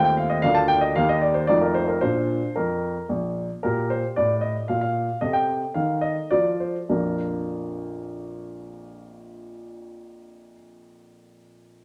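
A warm, polished baby grand piano plays alone from the first moment, carrying a graceful, playful classical-period sonatina in three-four time with a gently rubato feel, ranging from deep bass notes up into the upper treble. The harmony moves through Bb/D, Eb, F7 and Bb, then the pace slows between 2.8 and 6.9 seconds across a Bbmaj7 and an F7/C before settling home on Bb. The piano sits present and up front in a large, reverberant studio, and this short passage is cut from a longer piece.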